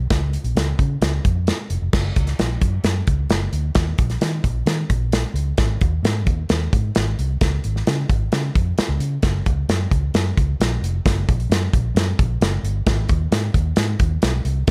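A straight 4/4 groove at 132 BPM drives this uplifting, joyful slice of uptempo 1960s-style soul in F# major, tuned slightly sharp to A4 = 445 Hz. A vintage foam-muted fingered electric bass, dark, round and amped, carries the low end from the start, while an acoustic drum kit with a small-room sound, punchy kick, medium-tuned snare, hi-hat and crash cymbal sits up front from 0.1 seconds. The mix is dry, with little reverb, and the music shifts into a new section at 1.9 seconds that runs to the end of this cut from a longer piece.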